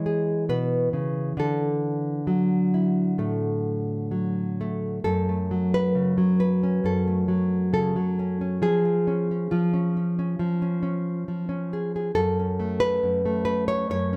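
A lone nylon-string guitar sits up front in this haunting, reflective folk fragment, fingerpicked in a classical manner with an acoustic warmth and the occasional finger squeak caught by close, detailed microphones. The pace hovers around 68 BPM in 4/4, but the rubato feel lets the time stretch and breathe, and the instrument is tuned slightly under standard pitch, with A at 439 Hz. Set in F# minor, the opening moves from C#m to Dadd9 before a new passage arrives at 5.0 seconds, settling on F#m, passing through C#/E#, and returning to F#m at 12.1 seconds. The guitar ranges from a deep F#2 up to C#5, giving the brief phrase both a resonant low end and a plaintive upper voice. A moderate, large studio reverb lets each note hang and fade, deepening the contemplative mood of this short cut from a longer piece.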